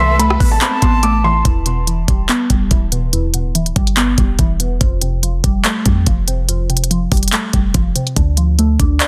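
A half-time trap beat at 143 BPM, with knocking kick, crisp hi-hats, handclaps and rim clicks up front from 0.2 s, drives this eerie, melancholic hip hop excerpt in E phrygian, where a deep, boomy sine 808 bass and a glassy, crystalline wavetable pluck with chorus and a filter sweep carry on after a brief opening in which a soft, felt-muted upright piano with audible action noise and a bright, airy concert flute, both through tape echo, sit over distant bowed chamber strings until 1.4 s, all in a small room with a dense, heavily limited modern master.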